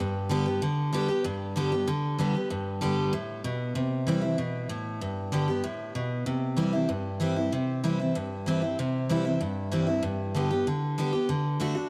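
A moderate plate reverb surrounds an up-front, full-bodied jumbo steel-string acoustic guitar, bright with fresh strings and finger squeak, as it plays picked solo rock in G major at a rollicking, upbeat 191 BPM, tuned to A4 = 437 Hz, moving through G, C and D chords across this 11.9-second cut from a longer piece.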